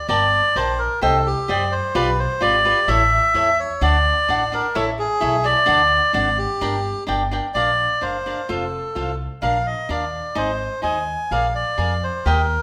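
Romantic and proud, this mariachi-flavoured Mexican folk excerpt moves at 128 BPM in 2/4, with a reedy, breathy melodica carrying the melody up front over crisp picked cavaquinho accompaniment and a woody, thumpy pizzicato upright bass, all set in a moderate recital hall reverb as the harmony settles into Bb major from 7.5 seconds.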